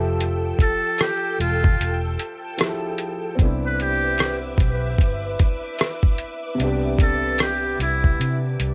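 The short cut has a hazy, homemade cassette sound with a touch of light reverb, a mellow and nostalgic lo-fi hip hop groove at 75 BPM in C major, swung on the sixteenths. A dark, round, foam-muted electric bass with transformer saturation sits up front from the start, joined at 0.2 seconds by a muffled, pitched-down sampler-style drum kit, also up front, with a thumpy kick, hi-hat and rim click. A clear, woody upright piano with audible action noise and long sustain plays the accompaniment, while a string machine voicing violas adds soft-attack sawtooth chords that warble through ensemble chorus and tape. From 0.6 seconds a buzzy, thin trumpet with a metal mute carries the close-miked jazz melody up front, with light vibrato, scooped notes and analog delay. Very quiet finger snaps from a small room appear as the harmony moves from Fmaj9 to Cmaj9 at 3.4 seconds.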